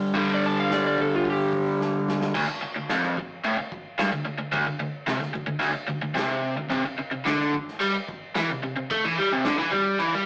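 This swaggering, rowdy slice of garage rock is cut from a longer piece in a straight 4/4, built on a bright, overdriven electric guitar riff that is picked, double-tracked and sits up front, moving through G5, D5 and C5. A vintage acoustic drum kit drives underneath with a punchy kick, a medium-tuned snare, hi-hat and crash, its dark cymbals and rolled-off top heard through a pumping small room. An electric slide guitar played with fingerpicks adds a slightly broken-up melody only near the start, dropping out at 2.3 seconds. A drum fill from 1.8 seconds leads into the next section at 2.4 seconds, where the riff carries on with the drums. The whole take has the rough feel of a rehearsal-room recording, with tube saturation, a small-speaker character and a moderate stone-room reverb.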